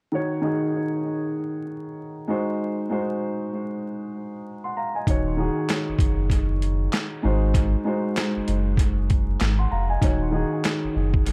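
Vinyl crackle and an echo-heavy mix with light reverb wrap this brief, moody boom-bap hip-hop fragment, where a dark, mellow concert grand piano, filtered and tape-worn with analog delay, rocks between Ebm7 and Ab7 on its own from the start. At 5.1 seconds a thick, saturated sub bass and a gritty, pitched-down sampler-style drum kit arrive up front, with a thumpy kick, a high-tuned snare, handclaps and swung hi-hats, the drums also carrying analog delay. The groove settles back onto Ebm7 as a short new section begins at 10.0 seconds.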